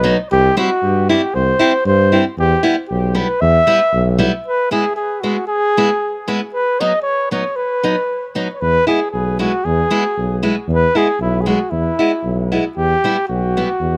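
A mellow flugelhorn carries the melody in this jolly, festive alpine folk dance, its light vibrato and classical poise framed by a touch of tape echo and heard close and up front. The tune moves at 116 BPM in a straight 2/4, starting in E minor before brightening into E major at 4.5 s, with chords shifting through C, E minor, E and B, tuned slightly below standard pitch at A4 = 439 Hz. A picked steel-string acoustic guitar supplies concert-style accompaniment in the middle register, sitting just as prominently beside the horn. A warm tuba anchors the bass with its own light vibrato and a more distant, roomy tone, dropping out after the opening and returning at 8.6 s on an E chord. The recording is dry and detailed, capturing a short cut from a longer alpine dance-band piece.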